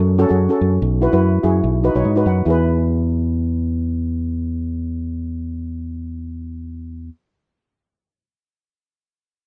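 Sunny and bouncy, this brief calypso excerpt moves at 145 BPM in a straight 4/4 feel, centred in E major with tuning set to A4 = 441 Hz. A double seconds steel pan carries the accompaniment in its middle register, struck with soft rubber sticks for a mellow, shimmering, metallic tone that sits up front. Beneath it, a fingered electric bass holds the low end with a direct, amped sound, also placed close and forward. The harmony travels from F#m through Bsus4 to B before settling on E at 2.5 seconds, and the pan adds a fill from 1.6 seconds just ahead of that arrival. Light reverb and a rough home demo mix give the 7.1-second clip an informal, unpolished character.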